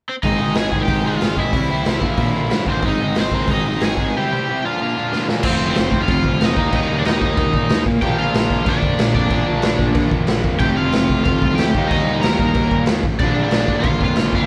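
A straight 4/4 punk rock excerpt at 185 BPM, energetic and rowdy, where a raw garage drum kit with punchy kick, gritty saturation and crash, hi-hat and snare sits up front beside a double-tracked, compressed distorted guitar riff, a bright overdriven cranked stack guitar carries the melody from 0.1 seconds, and a growly fuzz picked bass rumbles in the background, all in a light-reverb live room as a drum fill at 5.1 seconds launches the shift from an Ab–C–Bb progression to an F–Eb–Bb one.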